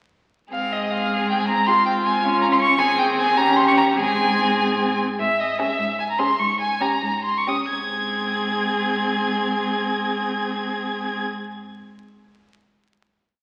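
Cheerful and spirited, this short, complete classical-period movement for string quartet moves in 6/8 with a flexible, rubato feel, slowing down from 4.6 to 7.7 seconds into a brief coda and a held final chord. A clear, focused first violin sits close and up front with the melody, while a dark, woody second violin sounds more distant, tracing independent inner lines, chords in the rhythm of the tune, pizzicato accompaniment and sustained chords. The viola, expressive with portamento, shares those same duties, and a rich, smooth cello supplies sustained and pizzicato bass, all heard through a wet scoring-stage reverb and the crackle of a very old 78 rpm record.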